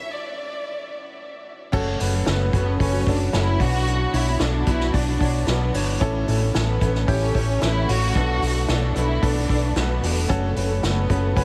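A lush, distant violin section opens alone before piano, bass, guitar and drums enter together at 1.7 seconds, lifting this uplifting piano-driven pop fragment into a steady, straight groove. A bright, woody upright piano with audible action noise carries the accompaniment, a round, punchy hollow-body electric bass sits up front, and a full-bodied picked dreadnought riff with analog chorus stays in the background. An acoustic drum kit played with bundle sticks brings a punchy kick and dark cymbals, while the whole mix is soaked in a huge, dreamy reverb.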